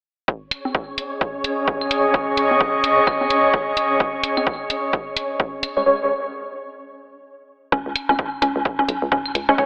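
A dark, nasal organ stab punctuates this clinical, hypnotic minimal techno fragment at 129 BPM with a swung 16th-note feel, first at 5.8 seconds just before a break and again at the close. A punchy kick, up-front hats and background claves, congas and toms run under an airy, breathy pad and a flickering, grainy texture that both pump with sidechain compression, until after the break at 7.7 seconds a woody, round mallet-like pluck riff enters on C#4 over a hollow, bouncy FM bass. The dreamy mix is soaked in plate reverb with a telephone-like colour.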